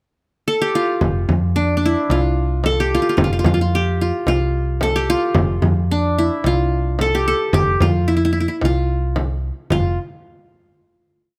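A straight 4/4 pulse at 110 BPM carries this festive, stately Arabic maqam ensemble piece in F maqam ajam, with the plectrum-plucked qanun opening alone in a short pickup at 0.5 seconds before the frame drum and the hollow-body short-scale fingered electric bass join at 1.0 seconds. Up front, the qanun's triple strings ring with a bright edge through an ornamented modal melody, while the dark, round, amped bass holds simple root-and-fifth lines and the compressed, saturated frame drum lays down a low and high stroke pattern with hard hands. Close, detailed microphones and light reverb frame the whole piece, which settles on a final note held from 9.7 seconds.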